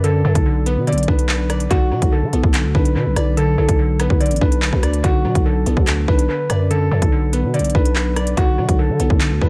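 A dark, mellow concert grand piano melody opens this cold, menacing half-time drill fragment, joined from the first moment by a glassy, detuned wavetable pluck colored with chorus and analog delay, a growling, saturated 808-style bass, and an up-front electronic drum kit of hard-clipped kick, crisp hi-hats, handclaps and rim clicks, the whole set in an echo-heavy digital ambience.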